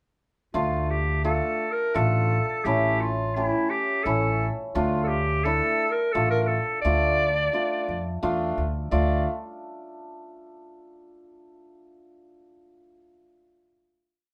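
In a straight-feel 3/4 lilt, this short, soulful and festive klezmer piece has a bright clarinet carrying a modal melody with ornaments, vibrato and scooped notes in a jazz style, sounding distant and roomy. A mellow, shimmering hammered dulcimer rings out syncopated triad chords, while a woody, growly pizzicato upright bass on steel strings plays a quarter-note figure over Dm, A and back to Dm. The trio plays live together in one room with moderate studio ambience from 0.5 to 9.2 seconds, settling onto a final chord at 8.9 seconds.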